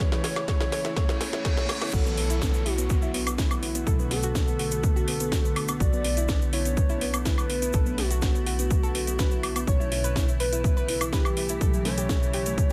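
A punchy, tape-warm electronic kick sits up front in this driving, bittersweet progressive house excerpt, with a house kit of cracking snare, metallic hi-hats, crash cymbal and woodblock playing a fill through the opening build-up. Background electronic sound effects (a riser, a reverse cymbal and a downlifter) run from 0.1 to 5.8 seconds, and a very quiet, glassy texture of drifting overtones hovers high above during the build. The drop lands at 1.9 seconds, when a grainy, bright egg shaker joins. A plucky analog bass with a funky, wave-folded edge holds a low pedal, while a dark, round pluck spins arpeggios through chorus, cassette-tape coloring and digital delay. An evolving, detuned wavetable pad sustains the chords, and a full, mellow octave-layered lead carries the melody with vibrato, chorus and delay, all three synths and the bass pumping against the kick in a dry, close mix.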